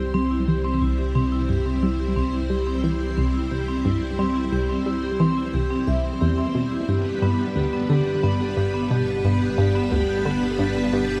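A straight 4/4 pulse at 89 BPM carries this luminous, expansive piece of sequencer-driven ambient space music in C major, tuned to A4 = 439 Hz, with its harmony moving from C to G at 6.9 s. Low in the mix, an analog drone holds the bass with an evolving, warbling pulse-width tone, mellow and softened by chorus, while a full-ensemble string machine fades in across the whole 11.2 seconds with lush, vintage sustained chords thickened by ensemble chorus. The most prominent part is an analog pluck riff: round and detuned, with a noise layer, ring modulation, a filter sweep, chorus and tape echo. Above it, a vibraphone played with medium mallets spins metallic, ringing arpeggios with fast motor vibrato; it sounds close-miked and up front, with tape echo trailing its notes. A wet cathedral reverb with a 6.1-second decay places the ensemble in a vast, echoing space, and the clip is cut from a longer piece.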